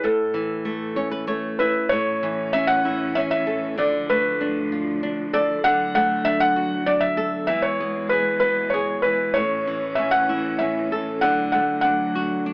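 A children's lullaby in A major, this short excerpt moves at 97 BPM in a straight 3/4, innocent and gentle in mood. A felt-muted upright piano carries the melody from the start, sitting up front with a soft, intimate tone, its thin felt and audible action noise giving it a hushed, close feel. Beside it, a fingerpicked flamenco guitar provides acoustic accompaniment, also up front, and a nylon-string guitar fill appears between 0.6 and 1.9 seconds. At 1.9 seconds a rich studio string section enters underneath with smooth, bowed sustained chords and vibrato. The harmony moves from A through Dm and D to E before returning to A and D, and the whole is framed by light reverb and an AM radio sound.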